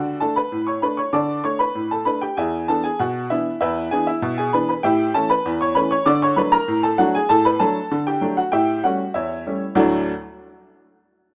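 Jaunty and playful, this short cut from a longer ragtime piece sets a lone upright piano, woody, worn and slightly detuned yet clear and up front, in a small room with light reverb at 97 BPM in a straight 2/4 feel, moving through D major changes from D to E7 and A7 before landing back on D as a new section begins at 9.8 seconds, all captured in a rough home-demo sound with a dull, rolled-off top end.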